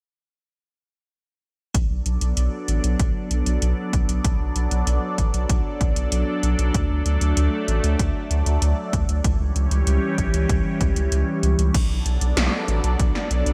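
Synthwave at 96 BPM in B minor, driving and nocturnal, opens at 1.7 seconds with a round, deep analog bass, a punchy electronic kick, and 80s-style drums carrying a gated snare, metallic hats and crash cymbal. A swirling, detuned sawtooth pad joins at 2.1 seconds with phaser, chorus, vintage sampler grit and sidechain pumping, while the pumping bass carries a filter sweep under chords moving from Bm7 through D and C#dim. The kick drops out briefly at 11.1 seconds before the harmony returns to Bm7, all in a bright 1980s-style digital production with light reverb.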